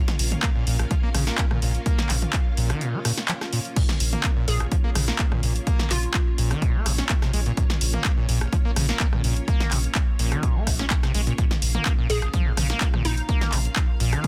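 This dense, heavily limited mix keeps its sounds dry, with a punchy electronic kick and a tape-flavoured analog drum machine sitting up front. The drum machine adds crash cymbal, handclaps, hi-hat, rim click, snare and toms, with a short room around the snare, clap and hats. It is a driving, hypnotic acid house excerpt in Bb minor at 126 BPM in straight 4/4, resting on a single Bb minor chord. A squelchy, resonant saw acid bass riff carries overdrive, lush chorus, dub echo, a filter sweep and sidechain pumping. Beneath it, a round, deep analog bass holds Bb1 with its own pumping, while a vintage, full-bodied string machine sustains chords in the background through ensemble chorus. After a brief break at 2.8 s, a hollow, bouncy square pluck with ring modulation, chorus and dub echo plays a bright melody from 4.5 s and returns at 12.1 s.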